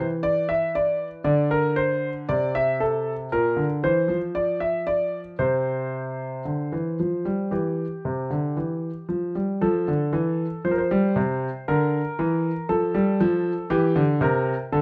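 A warm concert grand piano plays alone from the start, spelling out a baroque-style two-part invention in a classical vein, with a joyful, lively character over a steady, straight pulse. The close, intimate sound sits up front, with audible action noise, deep bass and a touch of light reverb, and the piano ranges from Bb2 to E5. At 9.6 seconds the harmony settles onto F before moving through Bb/D to C7, and the recording is cut from a longer piece.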